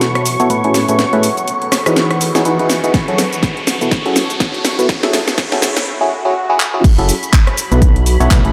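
A biting FM electric piano riff, treated with chorus, phaser, delay, sidechain pumping and a filter sweep, leads this soulful, bittersweet piano house excerpt at 123 BPM in swung 4/4. It sits over shimmering string-machine violin chords, a cloudy granular pad, a house drum kit with a cracking snare and handclaps, and a riser and swell. A punchy kick enters at 2.9 seconds, the drop lands at 6.8 seconds, and a fat, tube-saturated analog bass follows at 7.0 seconds, all in a dark hall-reverb production.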